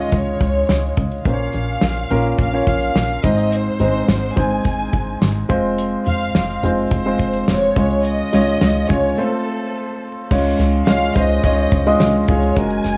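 A clear, woody upright piano and a lush, bowed violin section with vibrato open this bittersweet, driving piano pop excerpt at 106 BPM, both set in plate reverb, while a plucky, punchy analog bass with a funky filter pluck sits beneath them and a damped 70s drum kit joins at 0.1 s with a fat snare, tight kick and dark cymbals. The chords move from Db through Bbm, Ab and Fm back to Db, then a break on F at 9.2 s leads into a new section returning to Db at 10.3 s. The piano and dry, polished drums sit up front in a small room, with vinyl crackle and studio ambience around them.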